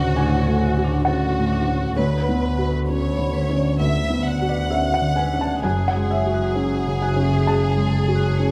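A moderate recital-hall reverb surrounds this fragile, melancholic neoclassical passage for piano and strings, cut from a longer piece and moving in a loose, rubato 4/4. Up front, a felt-muted upright piano plays soft, mellow accompaniment with audible action noise, while a rich chamber violin section carries the expressive, vibrato-laden bowed melody and a single bowed double bass adds smooth, even low notes. In the background, a bright, metallic vibraphone played with medium hard mallets rings out arpeggios through tape echo as the harmony moves from Dmaj7 to Bmadd9/D and then to F#madd9 at 5.6 seconds.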